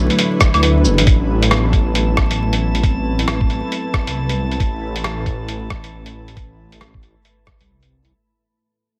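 A detuned saw bass anchors this short future garage excerpt, a menacing, unison sawtooth tone with a filter swell, tube saturation and sidechain pumping that sits up front from F#1 to D2 throughout. Set at 136 BPM in 4/4 with a 61% swing on the sixteenths in A dorian, the mood is rainy and melancholic, moving from Bm7 to Amadd9 at 1.1 seconds as a fade-out begins. A tape-warm, sampler-style kit of cabasa, claves, hi-hat and rim click starts at 0.1 seconds, and a muffled, thumpy electronic kick joins at 0.4 seconds, both compressed and re-recorded in a small room. A blurred granular cloud pad holds sustained chords with its own reverb and pumping, while a clean, mellow tine electric piano plays accompaniment in the background through phaser and dub echo until 4.6 seconds. From 1.3 seconds a glassy, chorused harmonics texture drifts on a high A5, and the whole piece carries light reverb, vinyl crackle and a faint mains hum.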